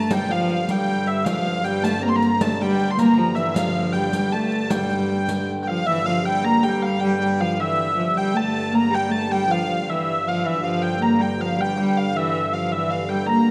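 A hurdy-gurdy, a viola da gamba and a pedal harmonium sound together from the start of this mysterious, driving medieval dance in a straight 6/8, with a riq joining at 0.1 seconds. The hurdy-gurdy carries the melody high up, its wheel-bowed, keyed tone smooth and even and placed up front. Well below it, the fretted gamba plays a second line in a period style, its gut-string sound rich and ringing with a light vibrato. The harmonium holds a low, breathing drone that is mellow and reedy. Far back in a live room, the riq adds dark jingles until 5.5 seconds, and a new section begins at 5.9 seconds with the three melodic instruments alone. A long, wet reverb and a dark, warm production wrap this fragment of a longer piece.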